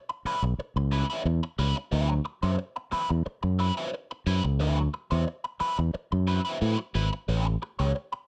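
Driving and hypnotic, this short funk excerpt pairs a crunchy, picked overdriven guitar colored by wah and phaser with a growly, up-front fingered electric bass, both dry and close as they move over rootless A9 and D13 chords before settling back on A9 at 7.3 seconds.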